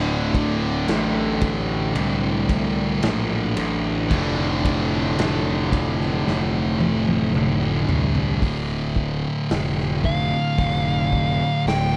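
A heavy, ominous stoner and doom metal excerpt opens with two thick fuzz guitars and a double-tracked, biting overdriven guitar playing a riff over a growly, up-front fuzz bass, while a raw garage drum kit with a punchy kick sits back in the dry, close 1970s-style mix and plays a fill from 6.3 to 8.4 seconds as the biting guitar drops out, before a compressed fuzz lead guitar enters at 10.1 seconds with a high melody colored by wah and tape echo.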